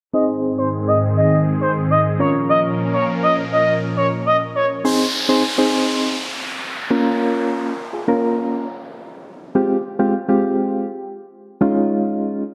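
Drenched in a lush hall reverb, the mix sounds dark and warm. This upbeat, euphoric pop passage, cut from a longer piece, moves at 102 BPM in 4/4 with a straight feel in Ab major. A smooth, mellow portamento lead with vibrato and chorus carries the melody between C5 and Eb5 until 4.7 s. It sits over a sustained supersaw pad, detuned and bright with a moving phaser, while a filter sweep runs through the opening section. Soft, round electric-piano-like synth keys with tremolo provide the accompaniment throughout. At 4.8 s, once the lead and pad have dropped out, an electronic downlifter enters, and the harmony moves from Ab and Bbm toward Fmadd9 and Dbadd9.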